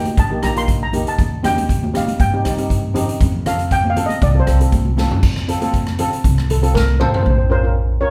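Recorded live in one large studio room with moderate reverb, this bouncy, festive calypso is cut from a longer piece. A mellow, shimmering lead steel pan played with soft rubber sticks carries the melody and solos until 5.2 seconds, over a vintage, band-limited double-seconds pan accompaniment, a woody, growly pizzicato upright bass with steel strings, and high-tuned congas struck with soft hands that ring close and dry in the background. Up front, an airy, polished street-band drum kit with a boomy kick, medium-tuned snare and dark cymbals plays fills near 4.7 and 6.8 seconds, as the chords move from Ebadd9 through Cm/Eb and F to Bbmadd9.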